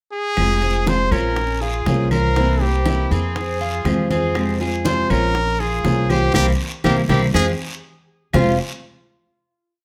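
Heard in a moderate studio room, this short, nostalgic and danceable Cuban son in the guajira style moves at 120 BPM in F harmonic minor. A close-miked trumpet with vibrato and scooped notes leads up front with hook phrases, while a dark, thumpy gut-string upright bass plays a tumbao that anticipates the chords. A fingerpicked flamenco guitar strums with muted slaps, and a metallic, double-strung Cuban tres picks an arpeggiated guajeo. Ringing low congas, very quiet round bongos in steady eighths, distant woody claves on a two-bar time line and a raspy guiro fill out the montuno vamp that begins at 0.4 seconds. A band accent arrives at 6.3 seconds, and a drum fill leads into the final chord at 8.3 seconds.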